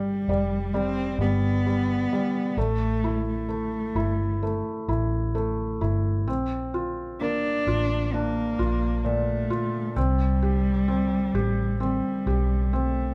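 A bowed solo cello with a woody, close tone and vibrato sings the melody from the start, over a soft, felt-muted upright piano and a round, foam-muted fingered electric bass, all three placed up front. This tender, emotional pop ballad in C major moves at a slow 65 BPM in straight 4/4, its harmony drifting from G7/F through A5 and Bbadd9 to C5. The trio sounds like a band playing live in one room, with light reverb giving an intimate feel to this 13.1-second cut from a longer piece.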